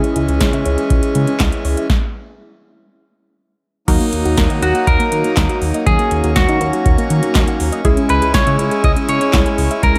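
A twangy, clean electric guitar carries the melody up front from 4.6 seconds, bathed in spring reverb and slapback echo, in this melancholic, cool synth-pop excerpt. Alongside it, a tape-warm analog drum machine drives with a deep kick, punchy snare, metallic hats, handclaps and crash, broken by a stop from 1.9 to 3.9 seconds. A glossy, pulse-width-modulated chorused synth bass, a funky, detuned polysynth comp with chorus, reedy accordion chords and a soft, round pluck arpeggiating in the background with chorus and slapback echo move between C#m and D#m under light reverb.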